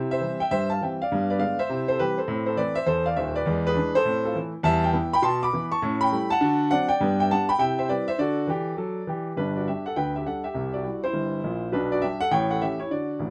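A clear, up-front grand piano fills this short cut from a longer jazz piece, set in light reverb that keeps the sound close and present. The style is stride piano at a brisk 204 BPM in 4/4, with a swinging eighth-note feel that gives the music a playful bounce. The solo piano covers a broad span, from Eb1 in the bass up to D6 in the treble, and plays alone for the full 13.3 seconds. It opens in C major, moving through chords like G, Am and E7, before settling into G major from about 4.6 seconds. A new section begins at 9.4 seconds, cycling through G, C and G/B before landing on A7 as the passage is cut off.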